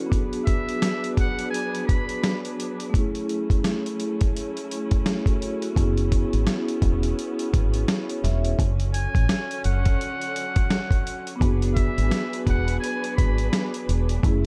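A gritty, compressed sampler-style drum kit sits up front in this reflective, moody boom-bap hip-hop excerpt, its thumpy kick, medium-tuned snare and hi-hat swinging at 85 BPM in 4/4. Soft-malleted vibraphone carries the accompaniment throughout, metallic and ringing with a slow motor vibrato and a boxy small-room tone, while a lush bowed string section holds sustained chords played sul tasto with a smooth, intimate top. A buzzy, thin trumpet with a metal mute states a jazz-style solo line over the opening, drops out at 2.4 seconds and returns at 8.9 seconds, its brilliant edge trailed by tape echo. A deep, round fingered electric bass, dark and foam-muted, joins at 5.8 seconds and sits up front alongside the drums. The harmony moves through E7/F#, F#m7, C#m7, Dmaj7/F# and E7, and the dry, dark production keeps the whole piece close and dusky.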